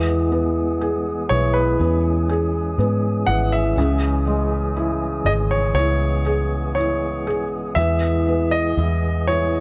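A heartfelt, emotional pop ballad in E major at a slow 60 BPM in straight 4/4, taken from a longer piece and set in a small room with light reverb. A soft, felt-muted upright piano with audible action noise plays the accompaniment beside a fat tonewheel organ holding sustained chords through a fast rotary speaker with key click, while a dark, round, foam-muted electric bass sits punchy and up front. At 1.3 seconds a clear, polished baby grand piano enters with the melody, bathed in tape echo.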